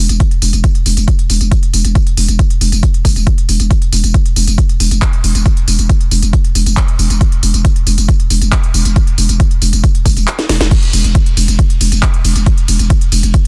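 Driving peak-time techno with a dark, intense mood, cut from a longer piece and set in a steady, straight 4/4. A growling, buzzy 808-style bass sits up front in the low register, its fast attack and decaying tail pushed through tube saturation, sidechain pumping and a low-pass filter. An overdriven, punchy analog kick hits dry and forward in the mix, the loudest element, while a layered techno drum kit fills in with a cracking snare, smooth hi-hats, handclaps, tambourine, ride and crash, all with a tape-like character and the sense of being re-recorded in a small room, the hats, cymbals and percussion pumping against the sidechain. At 10.3 seconds the kick drops out and a short drum fill follows, leading into a drop at 10.7 seconds that carries the track to its end. The sound is dry, with little reverb, and the master is dense and heavily limited.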